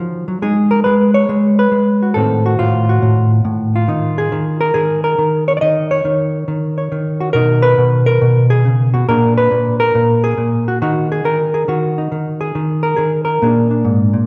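A recital hall's wet reverb, with a 1.6-second decay and a top end that stops at 10.8 kHz, surrounds this moody, late-night solo jazz piece cut from a longer performance. A lone fingered hollow-body electric guitar sits up front with a dark, clean tone, ranging from Ab2 to Eb5 in Eb minor at 138 BPM with a swung 4/4 feel. Its chords move from Abm through Adim7 and Bmaj7 to a tense Bb7b9, break off unaccompanied at 10.8 seconds, and settle onto Bb7 near the end.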